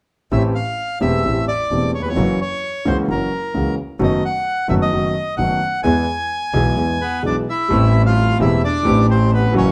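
From 0.3 seconds a reedy, dark bandoneon carries the melody up front over a smooth, vintage-toned concert grand piano with deep bass and a single close, earthy double bass bowed with a biting, nasal edge and light vibrato, giving this tense, dramatic rubato tango a shadowy feel under light reverb as the chords move from Am7 through F#7 and E before returning to Am7 at 7.7 seconds for a brief new section.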